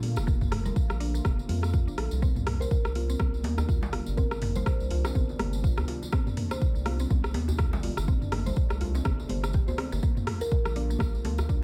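A small room holds this hypnotic afro house excerpt at 123 BPM in C dorian, with a deep, up-front electronic kick and a layered deep house kit of metallic hats, rim clicks and toms set on a 16th-note swing, joined by ringing congas, a jingly tambourine and a medium-tuned djembe that enters at 2.6 seconds. A round, dark analog bass and a smooth, detuned sawtooth pad in the background both pump with the sidechain, while a woody FM synth pluck plays chorused arpeggios through tape echo as the chords move from Bbmaj7 to Cm9 and back at 10.0 seconds. A plucked, warm kalimba sits in the background with tape-echoed thumb-plucked notes.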